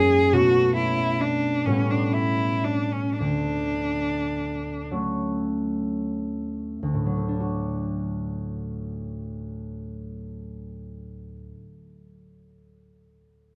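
In a rubato 6/8 with the dotted-quarter pulse drifting between 30 and 47 BPM and easing back over the first 6.8 seconds, this pastoral, dreamy impressionist duo in D major moves through B9sus4, A13 and Dmaj7 before settling on D. A rich, smooth bowed cello with even vibrato sings the up-front melody between C#4 and G#4 until 4.9 seconds. The thumb-plucked concert harp rings beneath it from D2 to F#4 and carries on alone to 12.1 seconds, all captured by close, detailed microphones in a light reverb.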